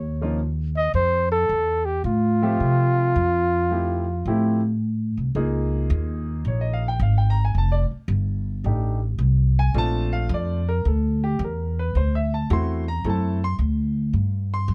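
A mellow flugelhorn carries the melody up front at the start, its light vibrato and jazz phrasing giving this short excerpt from a longer small-group swing and bop piece a sophisticated, swinging mood. Set in F major at 109 BPM in 4/4 with swung eighth notes, it opens on Ebsus2 before settling onto Fmaj7. The upright bass is plucked and sits prominently in the mix, woody and growly with the bite of steel strings, running the full length of the clip. A warm grand piano enters at 0.2 seconds and supplies natural-sounding accompaniment further back, carrying on with the bass after the flugelhorn stops at 4.8 seconds. The second part moves through Db69, F13, Bbmaj9 and D7 before the harmony drops away at 14.1 seconds, all captured with close, detailed microphones and very little reverb.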